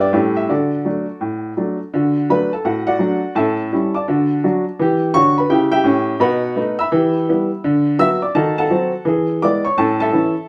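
A clear, woody upright piano carries this short stride jazz passage entirely on its own, sitting up front with a short sustain that keeps each note crisp. The mood is exuberant and playful, with a swung feel in 4/4 that gives the playing a lively bounce. The piano covers a range from G2 to E6, moving through a harmony built on A7 and D before turning toward Em, B7, Bm/D, D#dim7 and E7, and arriving on A at 9.8 seconds. A brief opening phrase gives way to a new section at 1.9 seconds that runs to the end. The piano sits in a wet studio reverb, captured live in a single room, and the clip is cut from a longer piece.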